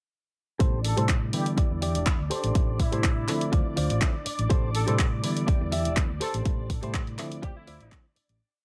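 Groovy and sensual, this short filtered disco house piece rides an up-front, punchy four-on-the-floor electronic kick and an analog drum machine's claps and pumping hi-hats, while a dark, round hollow-body bass plays a funky syncopated line through tube saturation. A clean tine electric piano with phaser plays dotted-rhythm rootless chords, a bright direct-recorded guitar picks a compressed funk riff with 12-bit grit, a lush sawtooth string machine holds chords in the background, and a tight horn section with light vibrato and tape echo adds short phrases from 0.8 seconds. A filter sweep runs across the whole groove from 0.6 seconds, and the track fades out from 5.8 seconds.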